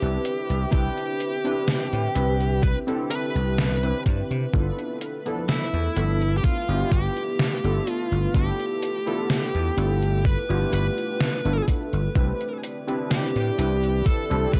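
Vaporwave in a woozy, nostalgic mood, drifting between Cmaj9 and G13 as a smooth, overdriven lead guitar carries the melody through tape echo over detuned, lo-fi synth keys with lush chorus and a mellow, tape-like pad sustained in the background, while a growly vintage slap bass and a gated 80s digital drum machine of overdriven hi-hat and gated-reverb snare sit up front, joined at 0.7 s by a thumpy electronic kick, all in a dry, gritty hardware recording cut from a longer piece.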